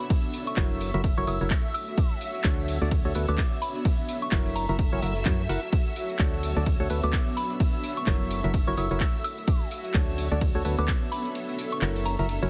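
A punchy, up-front electronic kick drives this bittersweet, soulful piano house excerpt, joined by a dry analog drum machine of handclaps, hi-hat, ride and tambourine. A dark, organ-like FM bass and a hollow, percussive organ stab riff with chorus and tape echo both enter at 0.6 s, over shimmering vintage string-machine violins, a blurred, evolving granular cloud pad and a pure, mellow synth-bell melody glazed with chorus, phaser and tape echo. The strings, pad, stab and bass all pump against the kick as the harmony sways between A and Dmaj7 in a heavily compressed, radio-like mix, until the kick drops out at 11.4 s.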